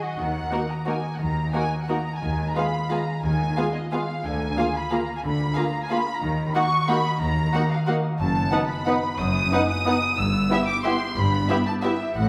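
Classical orchestral music in three-time, with uneven beats and a rubato feel, moves in a sweeping, dark mood through this short passage cut from a longer piece. Muted violins carry the melody up front, veiled and lush with vibrato and soft attacks, while a second muted violin line moves beneath them. A concert harp rings out mellow, fingerpicked arpeggios from the opening moment, and muted violas add accompaniment further back. Muted cellos and double basses hold the bass from 0.2 seconds, their tone dusky with light vibrato, the cellos smooth-topped and the basses close, and a mellow French horn section sustains chords in the background from 0.5 seconds. The harmony shifts upward into a new minor key at 8.2 seconds, and a wet recital hall reverb gives the ensemble a spacious glow.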